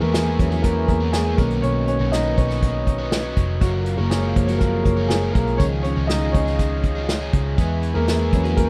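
A straight 4/4 pulse at 121 BPM drives this anthemic, piano-driven pop excerpt in F# major: an unplugged drum kit enters at 0.1 s with a tight kick, medium-tuned snare and hi-hat played with bundle sticks in a roomy studio space, beside a dark, round, foam-muted picked electric bass sitting up front. A woody upright piano with long sustain is featured throughout, moving through E6, Badd9, F#maj7 and C#add9, while an overdriven, double-tracked semi-hollow guitar plays a riff beneath it. In the background, a shimmering, retro pulse-width pad with chorus holds mellow sustained chords, and the mix sits in light reverb.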